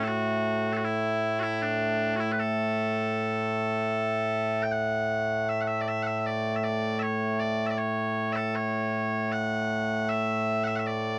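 A dry, close studio sound with a 1970s character and a light touch of reverb frames this short cut from a longer Scottish traditional piece. Loud, piercing bagpipes play alone throughout, their bright, continuous tone held up front in a straight three-time lilt. The opening phrase returns at 4.7 seconds, giving the music a proud, stirring mood.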